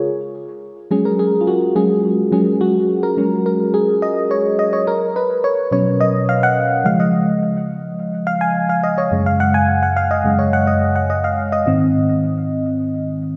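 A mellow FM electric piano opens this glossy, romantic pop excerpt and carries it alone for its full 13.4 seconds, at a moderate, straight pace of 106 BPM in four. Its tone is soft, round and full-bodied, with a dark edge, a quick attack that decays naturally, and a noise layer under each note. Chorus and tape echo thicken the sound, and the instrument sits up front in the mix across a span from low Gb2 to high Ab5. The harmony drifts through Gbsus2, Cbsus2, Db, back to Gbsus2 and on to Ab, leaving the phrase open as if it continues beyond the cut. A wet scoring stage reverb with a long 1.7-second tail surrounds the piano, giving the short passage a lush, cinematic glow.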